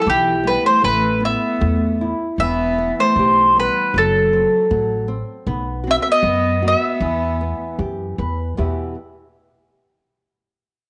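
A mournful, longing fado-style ballad opens at once on a round, double-strung mandolin picking the melody up front, joined by a single close, bowed cello with a dark, vibrato-laden sul tasto tone and a small, fingerpicked nylon-string guitar. An upright bass enters almost immediately, its steel-string pizzicato thumpy and woody beneath the harmony. At 78 BPM in 2/4, the pace stays rubato and unhurried in E harmonic minor, with the chords moving through Asus2, Em, F#dim and B5 before settling back on Em. The mandolin and cello finish together at 7.8 s, leaving the guitar and bass to carry on as the piece starts into a new section, the bass stopping at 8.9 s and the guitar at 9.0 s. A moderate echo-chamber reverb gives the acoustic ensemble a softly lingering studio space, and the recording is cut from a longer work.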